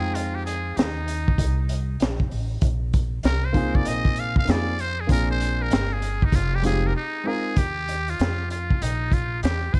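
Jazz-hop with a smoky, cool swing, where a buzzy, raspy metal-muted trumpet with tape echo carries the melody over a mellow, intimate concert grand that drops out at 7.6 seconds, a woody, thumpy upright bass and a crunchy, saturated breakbeat kit with a punchy kick, set in a small, dark room with a faint mains hum.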